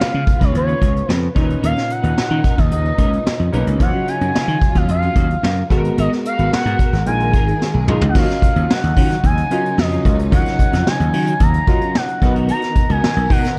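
Urban and nocturnal, this polished 1980s jazz-funk pop excerpt moves at 110 BPM in Eb minor. A smooth sawtooth lead with vibrato, portamento, chorus and digital delay carries the melody over an intimate concert grand piano with audible action noise and lush chorus, while bowed strings hold sustained chords and a clean, picked electric guitar riff sits in the background. Up front, a growly overdriven slap bass and a vintage brush kit with a high-tuned snare and punchy kick anchor the dark, warm, dry production, and a drum fill at 7.6 seconds leads into a new section at 8.2 seconds.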